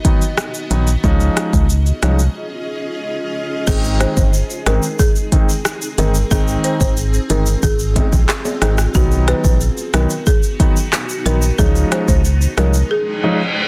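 Sunny and bouncy, this dancehall excerpt moves in a straight 4/4 groove. An up-front electronic drum kit with a deep kick, crisp hats and handclaps carries the beat, its snare softly clipped, while a dark, hollow FM bass with an organ-like, percussive attack enters at 0.7 seconds. An intimate grand piano, its action noise audible, and a cloudy, detuned granular pad both pump with sidechain compression, the pad adding its own built-in reverb and a bright, evolving shimmer. At 3.7 seconds a woody, rustic marimba takes up the melody through a digital delay, joined by a distant tube shaker and timbales that sound as if played in a large room. The dense, heavily limited mix stays dry overall, and the clip closes with a short break and an electronic reverse cymbal at 13.1 seconds.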